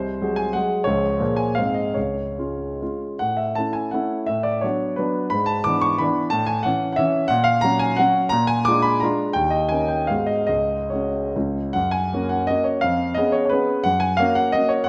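A solo concert grand piano carries this romantic classical dance, its deep bass and polished, up-front tone ranging from low C2 to D6. The mood is rustic yet graceful, a triple-time dance with dotted rhythms, shaped with flexible rubato. The harmony moves to a fresh key at 3.2 seconds and again at 7.3 seconds, each shift lending the tune a new colour before it moves into a new section from 11.8 seconds. The piano sits in a moderate recital hall reverb that gives the notes a gentle sense of space. The recording is a short section lifted from a longer piece.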